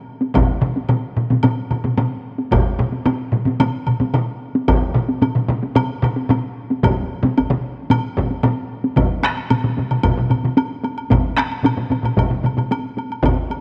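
A straight 4/4 pulse at 112 BPM drives this ceremonial, powerful Japanese traditional taiko ensemble piece, cut from a longer work. It opens with three taiko parts played with hard sticks, one close and dry up front, one close and dry but set back, and another set back in a small room, along with a fourth struck with heavy sticks in a live room near the front. A woody, close woodblock sits lower in the mix, and the performance moves into a new section at 9.0 s under a moderate plate reverb.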